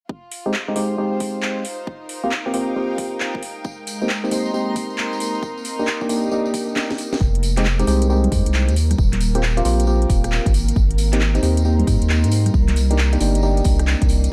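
A hollow, nasal organ stab sits up front in this bouncy, soulful two-step garage excerpt, its percussive hits coloured by lush chorus and delay over a looping Fm7, Eb69, Abmaj9, Cm7 progression. Underneath, a punchy, tape-warm electronic kick and a layered house kit with a cracking snare, metallic hats, congas, handclaps and rim clicks drive the swung groove. A jingly, vintage-sounding tambourine joins at 3.6 seconds, and an ethereal, airy pad drifts in at 5.0 seconds, mellow and in the background with ensemble chorus, reverb and sidechain pumping. After a short drum fill, a deep, thick sub bass with tube saturation arrives at 7.2 seconds and becomes the heaviest element in the mix. Throughout, a rich, earthy chamber string section with light vibrato pumps softly beneath everything and fades in further across the second half, all within a dark, warm production.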